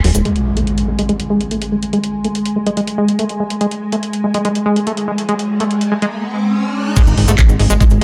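Psychedelic trance with an intense, alien mood, this short cut opens on a break as a morphing, detuned wavetable pad with phaser and ensemble chorus holds sustained chords under a squelchy, resonant acid bass riff, both pumping against the sidechain while filter sweeps run through them and metallic hats, handclaps and crash from a layered electronic kit sit low alongside a grainy cabasa. Electronic impacts and a riser from 4.9 to 7.0 seconds build toward a drop at 7.0 seconds, where a knocking kick lands up front with a punchy, funky sawtooth-and-square pluck bass. The whole mix is dreamy and soaked in plate reverb.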